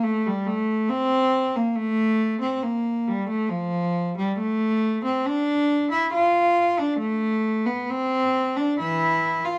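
The rhythm moves freely in an elastic rubato over a common-time metre, giving this short fragment of a longer piece a flowing, unhurried pulse. It is a classical, baroque-style suite movement for a single unaccompanied cello, radiant in mood and played in period style at a slightly lowered tuning of A4 = 438 Hz. The bowed cello carries the whole passage from the first moment to 9.6 s, staying between E3 and F4. Its gut-string tone is nasal and reedy, touched with light vibrato, and it sits up front even as a faintly distant quality hangs around it. A light reverb surrounds the instrument, lending the lone player a gentle sense of space.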